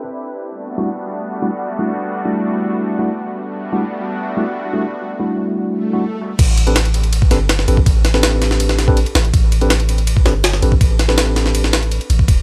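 A straight 4/4 pulse at 163 BPM drives this nostalgic, raw drum and bass and jungle passage in A minor, cut from a longer piece. It opens on a filter sweep over a lush, detuned sawtooth unison pad with chorus and vintage 12-bit sampler grit, holding soft-attack chords that move from a rootless Am11 to Em11, while a mellow tine electric piano adds clean stabs trailed by dub echo. An electronic swell enters at 5.8 seconds and leads into the drop at 6.4 seconds, where the pad gives way and Am11 returns. Here a pitched-up, compressed sampler-style jungle kit arrives up front with a thumpy kick, high-tuned snare, crash and ride, beside a deep, dark 808-style sine bass whose long notes decay between E1 and A1. The electric piano stops at 11.8 seconds, and light reverb with a low-pass filter colours the mix.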